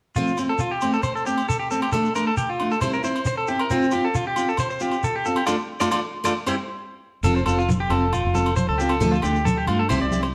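A joyful highlife guitar band in F major at 135 BPM opens with a bright, picked steel-string acoustic guitar, an up-front, twangy electric guitar at the edge of break-up playing arpeggios, and a grainy shekere, with ringing agogo bells joining quietly in the background. The harmony cycles through F, Dm and C, and the band hits an accent at 5.5 seconds. At 7.2 seconds a round, foam-muted fingered electric bass and damped, thick-skinned congas enter, with the band playing live together in a wet stone room.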